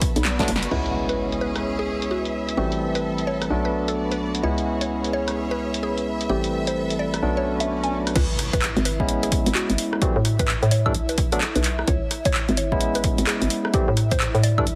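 A heavily compressed, radio-like mix with light reverb carries this moody, soulful two-step UK garage cut at 129 BPM, swung on the sixteenths in C# phrygian, where a hollow, bouncy FM bass pumps and a punchy, tape-warm analog drum machine of snare, handclaps, hi-hat, rim click, woodblock and crash cymbal drives beneath a soft, breathy pad in the background. A lush bowed string section with vibrato holds the texture until 8.2 s, while a bright, barky tine electric piano plays up-front stabs with dub echo and a filter sweep, and a woody, mallet-like synth pluck carries the melody through chorus, phaser and tape echo. Electronic impacts and swells mark the build, and the electronic kick drum returns at 8.2 s for the drop, over minor-seventh chords on C#, A and B.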